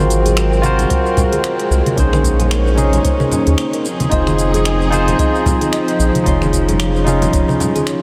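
Sunset chillout in Bb minor at 112 BPM, this wistful, relaxed excerpt moves with a 16th-note swing and drifts through Ab13, Bbm11, Fm7 and Dbmaj7/F. A bright, barky tine electric piano sits up front with analog delay, carrying the accompaniment, while a dark studio string section holds soft-attack, sul tasto chords with light vibrato beneath it. In the background, a woody, buzzing kalimba picks short arpeggios, also trailed by analog delay. A round, nasal analog bass sits up front with a fast attack and sustained notes, stopping at 7.4 seconds. A smooth, tape-warm R&B kit of finger snaps, hi-hat and shaker is joined by ringing, hard-handed congas from 0.3 seconds and a deep electronic kick from 0.9 seconds, and a huge ambient reverb soaks the whole mix in a dreamy haze.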